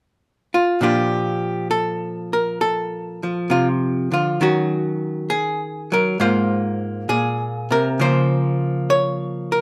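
A relaxed swing at 67 BPM in 4/4 carries this short, playful piece of solo jazz, taken from a longer performance. A single miked and amplified archtop guitar enters at 0.5 seconds, its dark, clean, picked hollow-body tone sitting up front in light reverb as it moves through Bbmaj9, Ebm7 and Ab69 before settling on Db6 at 8.0 seconds.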